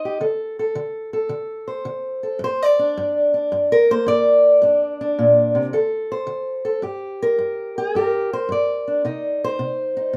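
A fingerpicked, ladder-braced acoustic guitar with old strings, dark and boxy in tone and set up front in a light reverb, carries this smoky, soulful fragment of swung acoustic country blues entirely on its own, moving between D5 and Gm chords before a new passage at 6.8 seconds turns from Gm to Cm.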